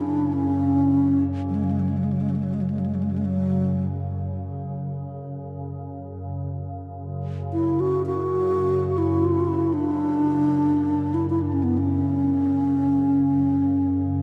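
A huge, wet ambient reverb with a long tail of about 3.6 seconds surrounds this short excerpt of world meditation music, which drifts in free time with a spacious, meditative mood and a dark, warm production. A mellow, hollow bass flute carries the melody from start to finish, sitting close-miked and up front, its airy, tongued notes shaded with vibrato and trailed by shimmer reverb and delay. Beneath it, a glassy FM pad holds a low drone throughout, its ethereal tone blooming with a slow attack, sustaining, and fading on a long release through ensemble chorus and its own built-in reverb. The pad also sits forward in the mix, though at a softer level than the flute. The passage states one section and then repeats it from 6.5 seconds.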